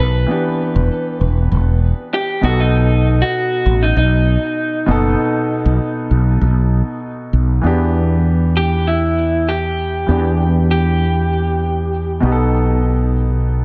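A dry, close-sounding cut from a longer mellow, smooth afrobeats piece in E minor at 98 BPM, moving between Em7 and B7, where a dark, round, punchy fretless electric bass sits up front beneath a natural-toned grand piano accompaniment, while a slightly broken-up, lo-fi electric guitar through a small old amp carries the picked, compressed melody with spring reverb and delay until it drops out at 12.2 seconds.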